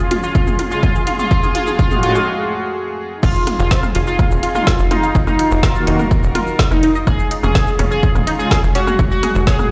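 A juicy, wave-folded sweep polysynth carries the melody up front in this dramatic, melancholic melodic techno cut from a longer piece, set over reedy gut-string chamber chords with 12-bit sampler grit, a detuned sequenced arpeggio synth and brassy, warbling analog pad stabs in the background, a deep house kit with woody snare and dark hats, and a punchy, tape-warm electronic kick, all in a lush hall reverb, as a drum fill and break build toward the drop at 3.2 seconds, where a tight sawtooth sequencer bass enters and sidechain pumping drives the strings, arpeggios, pad and bass.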